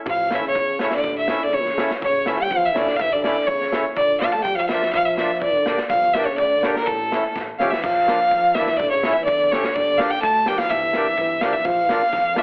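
Klezmer in A phrygian dominant at 124 BPM in a straight 2/4, bittersweet and soulful, cut from a longer piece: a biting, intense violin with light vibrato carries the melody up front, accompanied by a veiled, breathy trombone in a bucket mute on the second line, while a reedy, full accordion enters at 0.3 seconds. Underneath, a woody, thumpy pizzicato upright bass sits in the background and a gritty, saturated breakbeat kit with punchy kick and dark cymbals drives the groove, its fill at 7.4 seconds leading into a new section at 7.8 seconds over chords moving among A, Bb and Gm. The whole mix sounds heavily compressed, with a telephone-like radio tone, set in a moderate recital-hall reverb.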